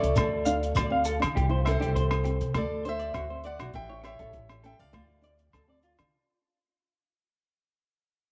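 A carefree highlife guitar band at 101 BPM opens with a boxy, fingerpicked parlour steel-string guitar carrying the melody up front, finger squeak and all, over a small nylon-string guitar in the background, a woody, growly pizzicato upright bass and a dark, smooth cocktail drum kit of hi-hat, punchy kick and rim click. At 0.2 seconds a slightly broken-up, lo-fi electric guitar through a small old amp adds compressed arpeggios with subtle chorus and slapback echo, joined by ringing agogo bells and a grainy shekere that drops out at 1.2 seconds. Moderate spring reverb surrounds the band as this warm passage fades out over a Dm, C, D7, A7 progression.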